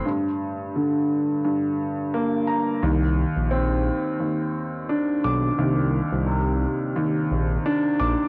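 Moody, reflective boom-bap hip-hop with a light 16th-note swing, opening on a dark, mellow baby grand piano with long sustain, filtered through cassette tape, which carries a break over a Gm chord alone until a smooth, detuned sawtooth-and-square synth bass with portamento glides and tube-saturated grit enters up front at 2.8 s on a Cm9, all wrapped in light reverb and the dulled, lo-fi haze of a home cassette recording.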